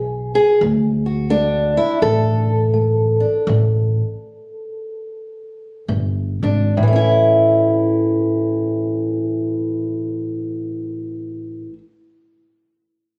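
Acoustic country blues with a swaggering, laid-back swing in 4/4 and A major, cut from a longer piece, where an up-front fingerpicked old ladder-braced acoustic guitar carries the boxy, old-stringed melody through plate reverb over a thumpy pizzicato upright bass, the tempo slowing from 0.6 s into a full stop at 3.5 s before the duo returns on a Bb7 at 5.9 s and settles on A as the second section begins at 6.8 s, all heard in a small room captured on a phone.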